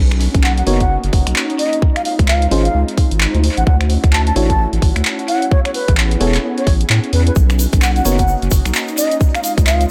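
A saturated sub bass opens this bouncy, sunny cut of two-step UK garage, deep, thick and up front, with a fast attack and a sidechain pump. Within moments the swung groove settles in: a tight, layered electronic kick sits at the front, while a punchy analog drum machine adds tape-warm finger snaps, handclaps and hi-hat through a tape echo. Two mellow pads sit in the background. One is breathy and soft, holding sustained chords with chorus. The other is an ethereal texture thickened by ensemble chorus, built-in reverb and a phaser, and both pads pump with the sidechain alongside the bass. A baroque flute carries the melody from 0.4 seconds, woody and crisp with vibrato and its own tape echo, while a glassy, bell-like FM electric piano drops in stabs from 0.7 seconds, roughened by 12-bit sampler grit and trailed by dub echo over lush major-ninth chords. A grainy, bright egg shaker joins from 7.4 seconds in the background, and light reverb keeps the echo-heavy mix open.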